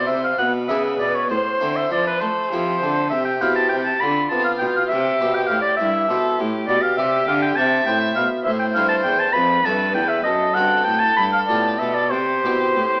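Solemn and introspective, this short baroque-style sonata movement with continuo unfolds in a rubato 6/8 at 67 beats per minute, cut from a longer piece and settling into C major from 6.7 s. A clear, roomy oboe carries the second line up front with light vibrato, sitting above a distant, smooth violin whose even, bowed melody is coloured by vibrato. Beneath them a full, Flemish-style harpsichord with two sets of strings supplies plucked accompaniment, while a rich, intense cello with a smooth top anchors the bass until 12.8 s. The harmony moves through diminished chords toward G7 and resolves to C at 12.1 s, giving the passage a searching, then settled quality. The whole is heard through a wet recital hall reverb and a worn, warbling cassette sound with pitch drift and an AM radio character.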